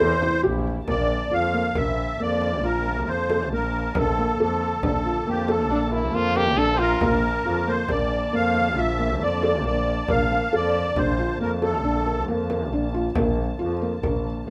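A reedy, shimmering musette accordion carries the melody from the start of this hopeful, playful chamber piece in 7/4, over a veiled con sordino string section in the background, soft arpeggios on a felt-muted upright piano with audible action noise, an earthy bowed double bass and a deep frame drum in the background, while a brilliant, nasal stopped French horn steps briefly to the front with a second line at 5.7 seconds, all set in a moderate studio reverb.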